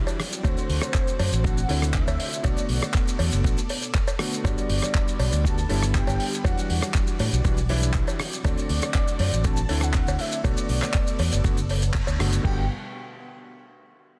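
A straight 4/4 groove at 120 BPM drives this feel-good, groovy nu-disco excerpt in G major, built on a gritty, thumpy electronic kick and a dry, damped 70s drum kit with crash cymbal, handclaps, hi-hat, rim click and shaker, both set in small room ambience, while a cowbell sits in the background. A bright, punchy fingered electric bass with an envelope filter carries the low end from 0.4 seconds, ranging from F#1 to A2 and standing level with the kick in the mix. A clangy, vintage electric grand piano plays accompaniment through tape echo, and a lush string machine holds very quiet sustained chords with phaser and ensemble chorus. Above them, a thick, dark unison lead with detuned sawtooth tones and vibrato sings the melody between C5 and A5 through analog delay. The chords move through D7, Bm7, Gmaj7 and Em9, the band hits an accent at 11.9 seconds, and a new section begins at 12.4 seconds on Gmaj7. 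The sound is polished with studio reverb and a dense, heavily limited modern master.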